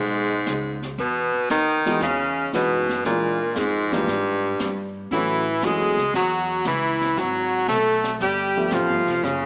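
A swung 4/4 pulse at 116 BPM drives this short, cool and moody cut from a longer piece of small-group swing and bop jazz. An edgy, forceful baritone saxophone carries the melody up front, its vibrato and scooped notes punchy, while a bright, present tenor saxophone plays a second line in the background with its own vibrato and jazz-style force. Underneath, a woody, thumpy pizzicato upright bass on gut strings holds the low end, and a brushed drum kit with a high-tuned snare, punchy kick and hi-hat enters at 0.5 seconds, sounding distant and roomy with a rolled-off top. A warm upright piano comes in at 1.9 seconds to add accompaniment until 9.2 seconds. Harmonies move through rich chords such as Emaj9, A#7#11 and G13, and the whole sits in a moderate concert hall reverb with a small-speaker character.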